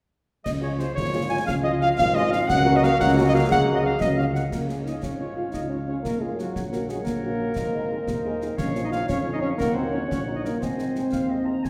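A military-style march for wind band in 6/8, rousing and spirited, cut from a longer piece. A cornet carries the melody with light vibrato in a classical style, joined from 1.0 seconds by a euphonium second line and supported by a distant, roomy woodwind section, while a dark French horn section adds very quiet accompaniment. An airy small flute group with crisp attack and a clear trombone section holding sustained chords in the background both drop out at 4.4 seconds, as the music moves from its opening strain into a second one that passes through minor chords before settling on Ab. Underneath, a mellow tuba anchors the bass, and concert snare drum, dusky clash cymbals and concert bass drum drive the march, sounding close and dry. The band sits in a wet recital hall reverb that lends a church-like spaciousness.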